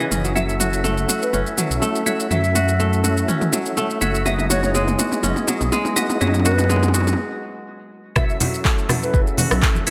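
A driving 123 BPM groove in 4/4 with a light swing on the sixteenths anchors this spiritual afro house excerpt in F# dorian, taken from a longer piece. From the start, a produced, layered deep house kit of smooth hats, handclaps, rim click, shaker and toms sits up front and runs a drum fill through 7.2 seconds, while a crisp, ringing kora plays fingerpicked arpeggios through a low-pass filter, tape echo and sidechain pumping. A round, percussive tonewheel organ adds stabs coloured by chorus vibrato and a slow rotary speaker, and a dark, rumbling detuned saw bass with tube saturation pumps beneath the chords F#m7, Emaj7/F# and C#madd9/F#. An airy, hollow jazz flute carries a tongued, straight-tone melody in the background, softened by a low-pass filter and tape echo. After a brief break, the drop lands at 8.2 seconds on F#m7, bringing in a deep electronic kick up front and saturated, compressed congas, all set in a lush hall reverb.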